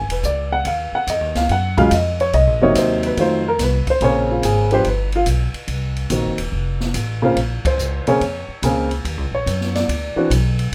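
Late-night and cool, this swinging jazz piano trio fragment puts an intimate upright piano with audible action noise up front on the melody, a woody, dark pizzicato upright bass beneath it, and an open acoustic drum kit with dark cymbals and a boomy kick, all in light reverb, with a band accent landing at 7.6 seconds.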